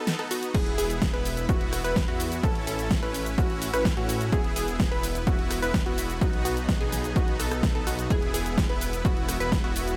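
Anthemic and uplifting, this festival progressive house excerpt in E major drives at 127 BPM in a straight 4/4, opening with a short break where lush, detuned unison pluck arpeggios and huge, bright supersaw chords, both pumping with sidechain and trailed by tape echo, ring out over a B chord before moving through E, A, E, B and back to E. Just after the start, the big-room dance kit comes in with a huge snare, hi-hat, cabasa, rim clicks and crash cymbal. At 0.5 seconds the punchy, overdriven electronic kick arrives up front with the roomy weight of a large space, joined by a thick, saturated, chorused detuned saw bass. A digital ambience surrounds the mix, and the pluck's moving notch and noise layer give its decaying notes a restless sheen.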